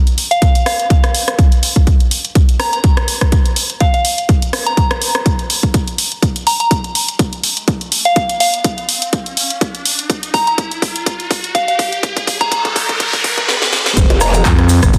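A growling FM bass, thick and up front with tube saturation and sidechain pumping, slams in with a brief, wobbling growl bass and a grainy egg shaker sitting distant in the background at the drop at 14.0 seconds of this bouncy, aggressive bass house cut in F minor at 124 BPM. It arrives after a build-up where a soft, warbling synth bell with chorus and delay floats over overdriven house drums with a cracking snare, a punchy kick and an electronic riser and noise sweep.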